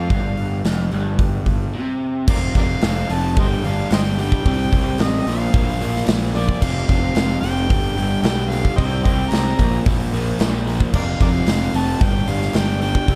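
A gritty, amplified harmonica leads this brooding classic rock passage with a punchy pop-style solo melody marked by tongue slaps and a slapback echo. Beneath it, a crunchy, double-tracked electric guitar plays a picked riff up front, dressed in spring reverb and its own slapback echo, while a growly fuzz bass with a bright, direct-and-amped edge drives the low end. A big acoustic drum kit with a punchy kick, medium-tuned snare and bright cymbals sits up front and keeps the straight 4/4 feel pushing forward. After a short break at 1.7 seconds, the band settles into a longer driving section built on power chords cycling through F5, G5, C5 and Bb5. A very quiet, crisp, compressed group handclap joins at 2.8 seconds and adds a saturated human touch. The whole mix sits in light reverb and studio ambience, and the passage is cut from a longer piece.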